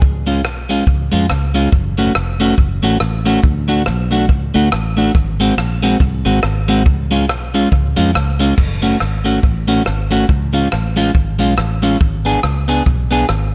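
A small room with light reverb frames this cut from a longer ska piece, and the whole mix rolls off above 7.5 kHz. The mood is energetic and mischievous, with a swung 4/4 feel. A swinging big-band drum kit sits up front with an airy, polished hall tone, shadowy cymbals and a punchy kick, using crash, hi-hat, kick and rim clicks. Beside it, a fingered electric bass plays a round, foam-muted line with a direct, amped character. A clean electric guitar enters at 0.3 s and plays dark, fingered accompaniment, its pitch drifting with a warbly wobble. The chords cycle through C#, F#m, D and G#7, then move through C#, F#m and C# again before landing on G#dim near the 12.0 s mark.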